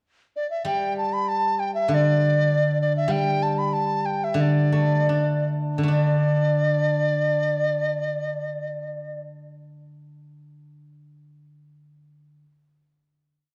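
A reedy large dizi opens at 0.4 s with a brief pickup, joined at 0.6 s by a steel-string zither in a short, complete piece of pastoral, graceful Chinese traditional chamber music. Set in 2/4 but played rubato, the tempo moves between 68 and 101 BPM, and the music slows from 3.1 to 5.9 s before settling into a final chord. Up front, the dizi carries a modal melody with ornaments between D5 and B5, its bamboo tone pure yet buzzing from the membrane, with a crisp, chiffy attack and vibrato. The zither, also up front, plays a low-string accompaniment between D3 and D4, picked with fingerpicks for a ringing, silvery sound that lasts until 12.4 s, after the dizi stops at 9.2 s. A recital hall reverb with an RT60 of 1.4 s surrounds the pair in a dark, warm production.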